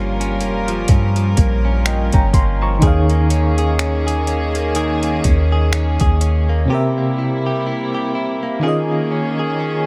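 A soft, round 808-style bass sits up front with a deep, dark sine tone, anchoring this late-night, sensual contemporary R&B excerpt at a slow 62 BPM in 4/4 with a 16th-note swing. A smooth R&B drum kit of finger snaps, hi-hat and a soft kick enters at 0.2 s, its metallic hats and tape-tinged, electronic character pressed close to the listener. An FM electric piano with tremolo provides mellow accompaniment with a faint noise layer, while a clean, direct-recorded electric guitar picks compressed arpeggios through a digital delay. Beneath them, a studio string section holds sustained chords with light vibrato and a reedy, gut-string, period-style tone, its level pumping from sidechain compression. The harmony moves through Gm7b5, Eb7sus4 and C7. The drums drop out at 6.5 s and the bass at 6.7 s for a break, leaving keys, guitar and strings in a dry, close room until the cut at 9.9 s.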